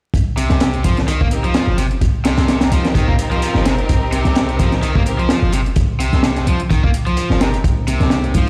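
Gritty and swaggering, this breakbeat excerpt at 128 BPM sits on a single Cm7 chord, driven by a crunchy, saturated drum kit with a punchy kick and high-tuned snare, a deep, boomy 808-style bass, and a faint analog electronic hi-hat tucked behind. An overdriven, bright guitar riff pushes up front with tube saturation and tape echo, while a lush, bowed string section adds focused stabs from 1.3 to 7.5 seconds. Near the close, a moody, detuned analog pad with chorus, 12-bit sampler grit and sidechain pumping arrives at 7.8 seconds, ringing congas flick past in the background, and the whole mix carries stone-room reverb and vinyl crackle.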